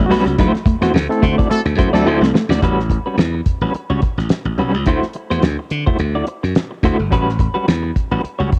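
Opening with a dark, scooped semi-hollow electric guitar through tremolo, a compressed clean guitar riff, barky, lightly overdriven reed electric piano stabs and a growly, glassy slap bass, joined by a dry, fat-snared 70s drum kit at 0.1 s, this gritty, strutting funk groove at 107 BPM with swung 16ths moves through a band accent and drum fill, as a clear horn section adds a brief second line from 1.5 s before the riff and stabs drop out at 2.4 s, leaving guitar, bass and drums to move between D9 and A13 in a small, lightly reverberant room with a cassette home-recording grain.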